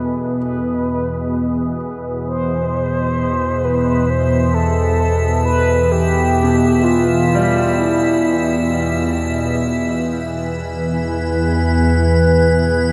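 Dark ambient drone, unsettling and desolate, in which an up-front, warbling organ-like drone with ensemble chorus and a mellow, horn-like synth lead with vibrato, chorus and tape echo fade in over the first 9.6 seconds (the lead carrying the melody until 9.2 seconds), while a deep, moody pad holds sustained chords, a clear baby grand piano with audible action noise plays arpeggios in the background through tape echo, and an icy, crystalline glass pad enters at 3.0 seconds, the whole passage sitting inside a huge, wet reverb.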